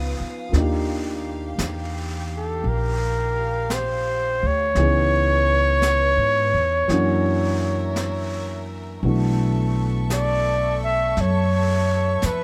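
Swung at a slow 56 BPM in 4/4, this intimate, tender jazz ballad opens with grand piano comping, a dark bowed string section holding soft sul tasto chords, and a woody, growly upright bass played pizzicato up front, while brushed drums with a high-tuned snare and hi-hat join at 0.5 seconds. A mellow trumpet with light vibrato takes the melody at 2.4 seconds, sitting forward over harmony that moves through Ebmaj9, C#m7, F#7b13 and Bm11. The close, detailed recording has little reverb, catching the piano's action noise in this excerpt from a longer piece.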